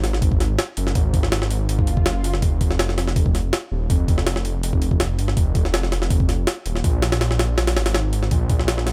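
Raw and nostalgic, this short drum and bass excerpt cut from a longer jungle piece runs at 163 BPM in 4/4 with a straight feel, its sampler-style drum kit sitting up front with a thumpy kick, medium-tuned snare and hi-hat that sound compressed, pitched up, gritty and tape-warm in a small room ambience. Alongside it, also up front, a dark detuned saw bass rumbles deep between Eb1 and Bb1, its sawtooth, square and sine tones beating with a fast attack and sustained, mellow body. An electronic swell sounds briefly in the background from 1.8 to 2.4 seconds, and the whole mix stays dry and close.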